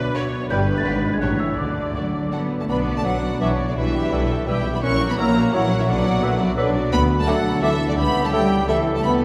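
In a brisk, straight 3/4 at 170 BPM, this playful, whimsical film cue in B minor opens with a delicate, bell-like celesta melody over lush bowed strings, with the violin section carrying the tune and a second violin line, viola accompaniment, and cello and double bass on the bass, while a mellow French horn section holds chords and a ringing concert harp picks arpeggios in the background. At 2.7 s the celesta has dropped out and a roomy solo cor anglais takes up a second line, joined at 3.0 s by a very quiet clear clarinet, an airy small flute group and a soft bassoon accompaniment. A cathedral-like reverb with a 5.0-second tail bathes the orchestra in a magical, spacious glow in this excerpt cut from a longer piece.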